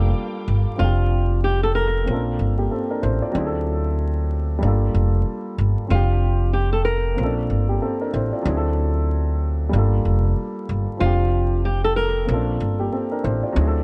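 A swung sixteenth-note hip hop groove in 4/4 drives this tough, moody excerpt, where a woody pizzicato upright bass and a dark, mellow baby grand piano with audible action noise hold the ground, lush bowed strings sound only in the opening 0.8 seconds, and a fingerpicked flamenco guitar with slapback echo carries the melody from 0.8 seconds, over a bed of vinyl crackle and small room ambience.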